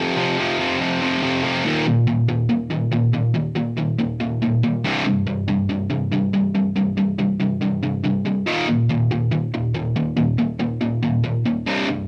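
Driving and aggressive, this short rock passage is cut from a longer piece and moves in a straight 4/4. A single distorted electric guitar carries everything, playing by itself from 0.0 to 12.1 seconds in a low register. Its tone is bright and overdriven, with a picked attack, double-tracked and placed up front, and a cassette-tape colour on top of the grit. The harmony opens on F5, shifts to Eb5 at 1.7 seconds, then moves through C5 and back to Eb5. It sounds like a home recording made on cassette, set in a light reverb that gives the raw playing a little air.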